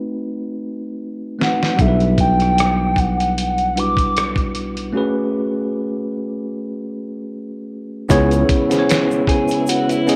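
A bright, clean tine electric piano sits up front through this relaxed, soulful neo-soul R&B excerpt in A major at 76 BPM, joined at 1.4 seconds by a hollow, woody clarinet-like synth lead with chorus and a gritty, sampler-style drum kit with a thumpy kick and fat snare, while a growly fretless bass sustains beneath over chords moving from B7b9 through Em9/B to Amaj13, with a drum fill at 1.0 seconds and a break from 4.9 seconds. At 8.1 seconds the harmony shifts to C#m7 as a lightly overdriven tonewheel organ with slow rotary speaker and key click enters alongside a faint egg shaker and finger snaps, and a slightly broken-up, lo-fi electric guitar adds a second line near the close. A moderate spring reverb colours the whole.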